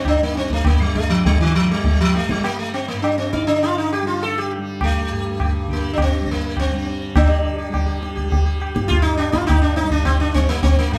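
A reverberant studio sound, with the players together in one room, frames this meditative, solemn Hindustani classical excerpt, where an up-front, plectrum-plucked sitar with buzzing sympathetic strings carries the melody over a bright, softly plucked, shimmering tanpura drone, while low-tuned, ringing tabla enter at 0.1 s and the music speeds up throughout, moving into a new section at 7.2 s.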